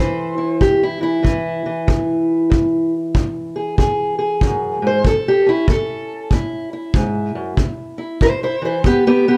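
A dark, warm production frames this laid-back, swaggering acoustic country blues excerpt at 95 BPM with a swung feel, where a boxy, parlour-style fingerpicked steel-string guitar carries the melody with plate reverb across chords of E and A, while a punchy, roomy kick drum played with brushes enters at 0.6 seconds.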